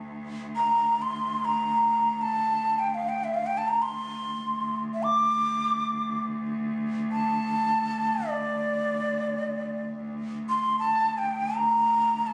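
Unfolding in free time, this hypnotic, longing excerpt from a Turkish makam ensemble piece, tuned to A4 = 441 Hz, opens on a single bowed cello holding a rich, smooth drone on D2 with vibrato. At 0.6 seconds a breathy, reedy end-blown ney enters close-miked and up front, carrying a tongued, vibrato-laden melody between D5 and D6 above the quieter cello. A moderate recital hall reverb surrounds both players, captured on a phone in the room, and the music continues to 12.3 seconds.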